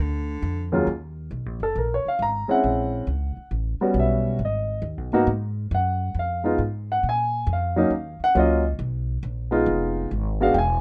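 Late-night and swinging, this small-group jazz piece in Eb minor moves at 136 BPM with a swing feel. A baritone saxophone with light vibrato and a smooth top sounds a brief melodic note before the up-front baby grand piano enters with accompaniment at 0.7 seconds. Beneath it, a woody, thumpy pizzicato upright bass plays from the start, all in a rough home-demo mix with light reverb and a dull, rolled-off top end.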